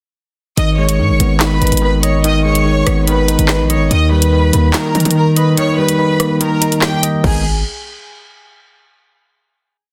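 A half-time drill beat at 144 BPM drives this short, tense and menacing hip hop piece in G# harmonic minor, with the drum kit's skipping hi-hats and fast hat rolls, hard-clipped kick, woody snare layered with handclaps, rim clicks, toms and crash cymbal sitting up front from 0.6 seconds. Underneath, a hard-hitting 808-style bass delivers long, punchy sub-bass notes with pitch slides, its sine tone roughened by a noise layer. A bell-like tine electric piano plays a bright, clean pedal-note arpeggio in eighths, repeated like a sampled loop, while a studio violin section carries a smooth, vibrato-rich looping melody doubled in octaves, touched with delay. The harmony moves from G#m to D# and back, and the kick drops out at 5.6 seconds before the verse resolves into a final G#m chord at 7.2 seconds. The dense, heavily limited modern master wraps the parts in digital ambience.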